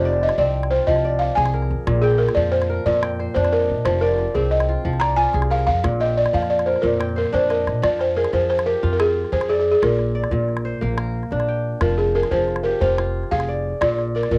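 A buzzing, woody balafon opens up front with a featured solo, played with soft rubber mallets over a crisp, ringing kora that fingerpicks arpeggios and a pizzicato upright bass with steel strings and a woody, warm tone. This West African string and xylophone music is flowing and hypnotic, moving at 121 BPM in a straight 12/8 counted in dotted quarters, in F dorian. The harmony alternates steadily between Fm and Bb, and a small, close calabash keeps the percussion dry beneath the ensemble. A drum fill from 7.3 seconds leads into a new section at 7.8 seconds, where the balafon solo gives way to the full group continuing the same cycle. The balafon and kora carry the sound of cassette tape, and a modest small-room reverb frames this home recording, a cut from a longer piece that runs to 14.4 seconds.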